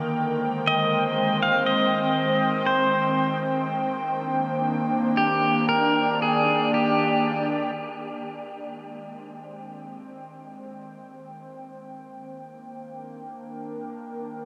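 A bright, twangy pedal steel guitar, played with fingerpicks and slide, carries the melody from 0.7 to 7.5 seconds, using volume swells that melt into a diffuse ambient delay. Beneath it, a breathy, detuned pad of sawtooth and triangle tones with a noise layer and chorus holds soft, slow-attack chords that drift between Abmaj7 and Ebmaj7 across the whole 14.5-second fragment. This weightless, warm ambient piece sits in a huge, wet reverb with the gentle character of cassette tape.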